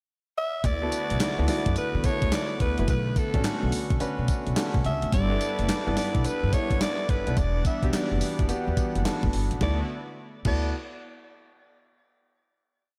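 A hard-swung new jack swing beat at 107 BPM drives this bouncy, upbeat R&B piece in D major, its up-front 80s drum machine pairing a thumpy kick with a gated-reverb snare layered with handclaps, along with hi-hat, tambourine and crash cymbal, while a woody, dark pizzicato upright bass plays a swung line with muted ghost notes. During a short pickup, a breathy, raspy alto saxophone enters at 0.4 seconds with scooped, motif-based call phrases touched by delay, and a warm grand piano adds syncopated rootless chord stabs with audible action noise as the harmony moves through D69, Bm9, G69 and Em9. A brassy, detuned sawtooth pad with chorus and vibrato sits in the background, and the piece lands on a final D69 chord at 9.6 seconds under light reverb.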